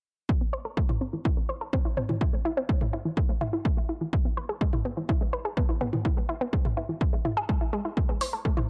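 A dry, close sound frames this short cut from a longer melodic techno piece, hypnotic and dark, moving at 125 BPM in straight 4/4 and set in A harmonic minor. An up-front analog pluck spins arpeggios between E3 and C5 from 0.3 s, its round, nasal tone built from sawtooth, square, sine and a noise layer, wave-folded with a fast attack and a decaying tail, and thickened by chorus, digital delay and sidechain pumping. A filter sweep runs across this arpeggio for the whole passage. Beneath it, an electronic kick drum sits up front with a punchy, tape-warm analog thump. From 0.9 s a punchy analog drum machine adds hi-hat and toms, both pumping under sidechain, giving the groove a breathing, insistent motion.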